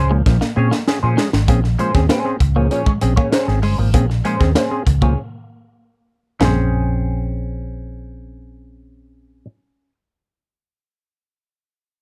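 Funk in Bb minor at 98 BPM, driving and hypnotic, opening on a Bbm9 chord as a dark, round, foam-muted fingered bass sits up front under a hollow-body semi-hollow guitar played through wah and an auto-wah clav jabbing percussive, stringy stabs through a combo amp. A crisp fusion kit with a high-tuned snare and punchy kick sounds gritty and saturated in a small, pumping room, opening with a fill from 0.3 to 1.5 seconds, while a bright, twangy clean guitar riff with spring reverb stays in the background. Drums and riff guitar drop out at 6.6 seconds, leaving bass, clav and wah guitar in this short cut from a longer piece, with a dry overall sound.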